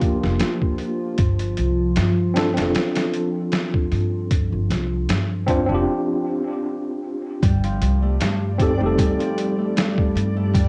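A smoky, cinematic trip hop excerpt at 77 BPM opens with a worn, slightly out-of-tune tine electric piano under a filter sweep, carrying overdrive, harmonic tremolo and tape echo, over a warbling, nostalgic tape-like pad and a gritty, pitched-down sampler-style drum kit with a thumpy kick, joined almost at once by a woody, dark pizzicato upright bass, and after a break from 5.9 to 7.4 seconds a ringing, fingerpicked Celtic harp adds arpeggios through analog delay while a reversed, dreamy swelling texture glows softly in the background from 8.0 seconds, all with a cassette-worn, home-recorded haze.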